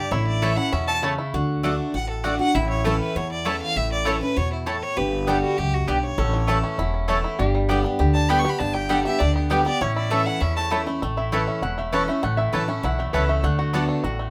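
A clear, focused fiddle carries the melody up front until 10.7 seconds in this driving, virtuosic bluegrass excerpt at 198 BPM in A mixolydian, moving through A, D and G chords. Around it, a twangy, percussive fingerpicked banjo shares the melody and returns at 6.2 seconds, while a bright, full-bodied steel-string acoustic guitar accompanies, a woody mandolin adds stabs, and a dark, thumpy upright bass anchors the low end. A mellow, nasal lap resonator guitar plays a metallic slide second line throughout and takes a steel-bar solo from 11.0 seconds, all within a moderate studio reverb.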